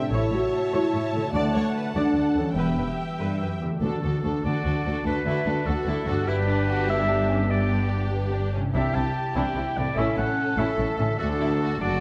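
Adventurous and soaring, this heroic 6/8 film-score excerpt sets a vibrato-rich violin melody over a lush second violin line, smooth violas, and a deep cello and double bass foundation, while a very quiet ringing harp arpeggiates throughout, mellow French horns hold chords until 3.2 seconds, and at 3.8 seconds a bright, up-front solo clarinet enters alongside a brief, round timpani entry, all bathed in a wet recital-hall reverb.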